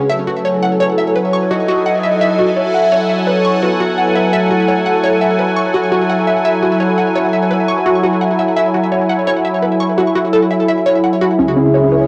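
A straight 4/4 pulse at 85 BPM carries this mysterious, cosmic ambient, sequencer-driven space music, cut from a longer piece and recorded at home on cassette with a wet studio reverb: an up-front sweeping resonant pad holds evolving, airy chords that shift from F#m7 to C#m7 at 11.4 seconds, a bouncy, detuned square pluck repeats its riff through lush chorus and delay, a breathy flute-like lead with vibrato sings its melody until 5.3 seconds and returns briefly at the close, and in the final moments a round analog bass sits deep in the background beside a bubbling stepped-filter texture.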